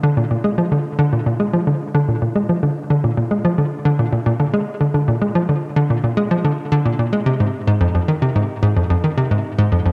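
Ambient in 4/4 at 110 BPM with a straight feel, this hypnotic, cosmic fragment is cut from a longer piece and tuned to A4 = 441 Hz. A single hollow square pluck plays solo across the full 9.9 seconds, moving between F2 and Ab3. Its square-wave tone carries a noise layer and a bouncy filter pluck, with a fast attack and short decay, and the part sits up front. Chorus and tape echo thicken the part, and the echo-heavy mix sits in a wet spring reverb with a 2.4-second tail. A cassette tape character colours the whole recording.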